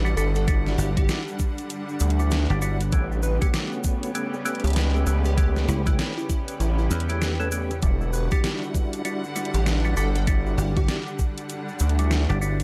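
A gritty, saturated synth bass anchors this playful glitch hop excerpt, joined by a knocking overdriven electronic kick, a punchy thumbed slap bass entering at 0.8 seconds, and an overdriven pop kit with hi-hat and deep snare, while a mellow tonewheel organ stabs through chorus vibrato, slow rotary and tape echo. A catchy plucky unison lead with tape echo, smooth symphonic strings, a cloudy evolving granular pad and a grainy tube shaker sit in the background over Em9 and A9 chords in a dark, dry mix.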